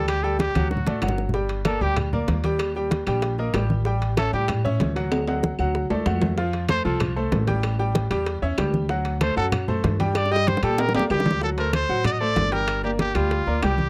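A driving, danceable salsa groove in straight 4/4 rolls on low-tuned congas, tight high bongos, ringing metal-shelled timbales and distant woody claves, with a thumpy gut-string upright bass and a brilliant, short-sustained grand piano up front, while two vibrato-rich trumpets share the lead: one opens and closes the excerpt, and the other, especially punchy, carries a solo passage from 1.3 to 11.4 s over drum fills in this dry, close 1970s-style studio excerpt.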